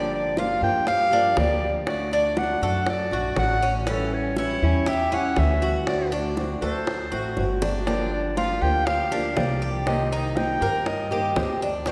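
Latin Cuban son and guajira in G minor at 120 BPM, nostalgic and sultry, with a clear, close-miked classical clarinet singing the up-front solo melody over fingerpicked flamenco guitar, bright metallic tres arpeggios on double strings, woody pizzicato upright bass, and round, low-tuned bongos entering at 0.4 seconds with a fill at 7.4 seconds, all set in the wet reverb of a church or concert hall.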